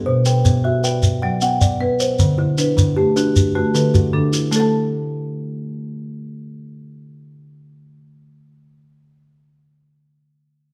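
A straight 12/8 pulse at 103 BPM in dotted quarters drives this short, trance-like cut from a longer southern African traditional piece, built on an mbira-style interlocking cycle in A dorian that moves from Bm to D before settling on A5. An up-front kalimba with a short, dark thumb pluck and a smooth marimba with rosewood bars, struck with medium hard mallets, both weave arpeggios throughout, while a grainy, close and dry shekere joins at 0.3 seconds and stops at 4.7 seconds. The hypnotic band sounds as though it is playing live in one room, wrapped in a moderate large studio reverb.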